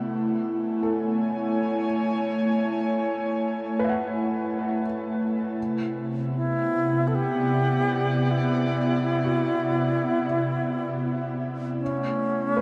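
Bathed in a huge, wet reverb with a dark production, this weightless ambient excerpt drifts at 77 BPM in a straight 4/4, tuned to A4 = 444 Hz and moving from Amaj7 to Cmaj9#11 and back. An airy, breathy pad sits up front with sustained, detuned, chorused chords glowing through shimmer reverb, while a felt-muted upright piano enters at 0.8 seconds with soft, intimate arpeggios, its action noise audible beneath a diffuse delay. At 6.4 seconds a pure, bright alto flute takes the melody, expressive and tongued with vibrato and lifted highs, floating forward through shimmer and delay.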